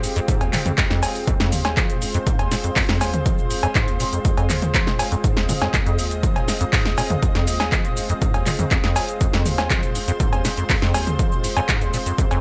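A lush, detuned sawtooth pad holding sustained F minor chords with chorus and sidechain pumping opens this trippy, driving acid house excerpt at 121 BPM in 4/4. It arrives together with a squelchy, resonant square-wave acid bass riff carrying 12-bit sampler grit and tape echo, and an up-front analog drum machine with a punchy snare, metallic hats, handclaps, cowbell, shaker and toms. A tape-warm electronic kick enters at 0.3 seconds, all set in a fairly dry mix.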